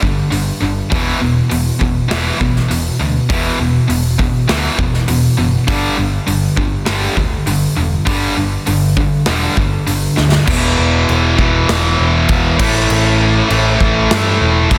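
A straight 4/4 pulse at 100 BPM drives this aggressive hard rock excerpt in E minor, where an overdriven guitar and a tight, up-front distorted guitar play riffs over power chords moving from G5 to E5 and later A5, a growly, punchy picked bass holds the low end, and a big acoustic drum kit with bright cymbals, a medium-tuned snare and a boomy kick plays a fill from 10.2 to 10.5 seconds into a new section, all set in a lush hall reverb with small room ambience and a dense, heavily limited modern master.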